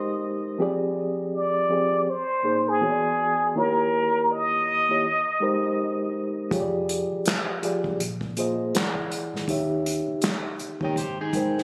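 A lazy 4/4 groove with a 60% swing on the sixteenths sets a late-night, smooth neo-soul and R&B mood in this short cut from a longer piece. A reedy electric piano, clean and up front through its built-in speakers with a harmonic tremolo, opens with a brief fill and carries the lush chords throughout. Over it, a plunger-muted trumpet sings a breathy, wah-wah jazz solo with vibrato, soft attacks and scooped notes, sounding distant and whispered yet intimate under an analog delay, until 6.2 seconds. At 6.5 seconds a dark, round, foam-muted fingered electric bass and an acoustic small-room drum kit enter together; the kit plays kick, medium-tuned snare, hi-hat and handclaps with bundle sticks. At 10.8 seconds a slightly broken-up, twangy electric guitar adds a fingered second line. The phone-in-the-room recording adds a light club reverb.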